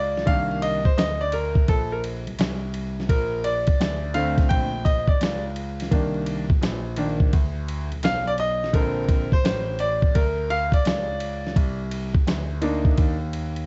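A brilliant, vintage-toned grand piano sits up front and carries the solo from the very start, its smooth chords ringing with long sustain as they alternate between Cm9 and Bbmaj7 in C dorian. This mellow, nocturnal jazz-hop piece moves at 85 BPM with a 16th-note swing and is tuned slightly low to A4 = 438 Hz. A second, darker concert grand holds down the bass in a deep register, while a compressed, gritty sampler-style kit enters at 0.2 seconds with a thumpy kick, fat snare, hi-hat and ride re-recorded in a large room, all set in a dark, warm production with vinyl crackle and light reverb.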